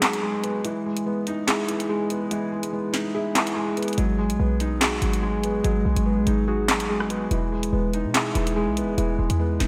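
Dark and ominous, this half-time drill hip hop piece at 144 BPM sets a soft, felt-muted upright piano with audible action noise against muted synth key arpeggios coloured by chorus and analog delay over G#m7 and Emaj7 chords, while an up-front electronic drill kit of sharp snare, bright hats, rim clicks and handclaps plays throughout, with a punchy, tight 808-style bass joining at 4.0 s, the whole mix soaked in a dreamy, lush hall reverb.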